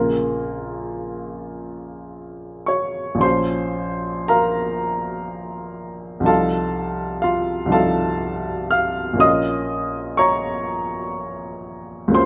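Yearning and mournful, this short classical fragment is a romantic nocturne for solo piano, cut from a longer piece and moving in a slow six-eight with uneven, rubato beats. A single upright piano carries everything, its tone clear, woody and polished, with the audible noise of its action adding an intimate, present quality. The instrument sits up front, captured by close, detailed microphones, while a moderate recital-hall reverb gives it a sense of space. Its range stretches from deep bass notes up into the high treble, and the harmony settles on the minor home chord, turns toward a dominant seventh at 6.3 seconds, and returns to the minor chord at 9.2 seconds. A brief opening passage gives way at 3.2 seconds to a contrasting second idea that continues until the fragment stops at 12.3 seconds.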